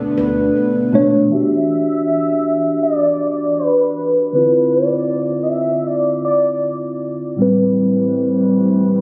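R&B with a sensual, moody feel, this short cut from a longer piece is carried throughout by an up-front, mellow tine electric piano, joined at the start by a lush, warbling unison pad, a deep, saturated sub bass sitting in the background and a ringing handpan with digital delay that drops out at 1.7 seconds. From 1.3 seconds a velvety, detuned synth lead takes the melody, treated with chorus, phaser and delay, as the chords move from Em9 to Dm9 and on to Am9, where the vintage-toned pad returns at 7.4 seconds. The sound is softened by a low-pass filter and light reverb, with a room-captured, phone-recorded character.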